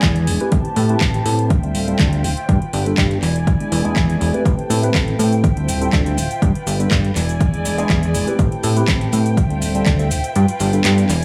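A dry, gritty recording with a small-room ambience opens this groovy, funky filtered disco house cut, taken from a longer piece and moving at 122 BPM in a straight 4/4 in A minor, with a filter sweep running through all of its 11.2 seconds. A punchy, overdriven analog kick drives the groove until it stops at 10.0 s. Around it, a layered house kit of metallic hi-hats, cabasa and handclaps carries its own overdrive and pumps against the kick, with faint maracas tucked beneath. Up front, a plucky sawtooth and pulse-wave bass with ring modulation and a fast, decaying attack pumps through a low-pass filter. A clean tine electric piano, heard as if through its built-in speakers and colored by a phaser, comps over a looping E7, Am7, Dm11, G7 progression. Above it, an intimate chamber violin section holds soft-attacked, lightly vibrato chords, both parts filtered and pumping with the bass.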